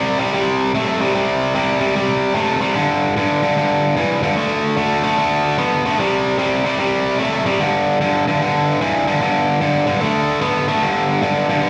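A biting, overdriven electric guitar plays alone up front in this laid-back, soulful blues excerpt in G major, swinging at 149 BPM over C5, G5 and D5 power chords in the low register, its picked tone thickened by slapback and tape echo and set in a moderate club reverb, as if heard through the venue's PA at a live gig.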